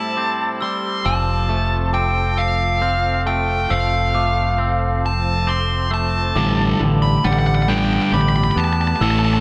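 Cathartic and melancholic, this slow 6/8 rock excerpt at 45 BPM sets a dark, smooth overdriven lead guitar melody with tape echo over a pure, detuned organ-like pad with chorus and reverb, bell-like glockenspiel arpeggios in the background, and twangy, compressed electric guitar arpeggios soaked in spring reverb and echo; fingered bass enters at 1.1 seconds as Am7 gives way to Fmaj7, and a sludgy distorted guitar riff arrives up front at 6.4 seconds for a build-up over G/A, within a light digital ambience.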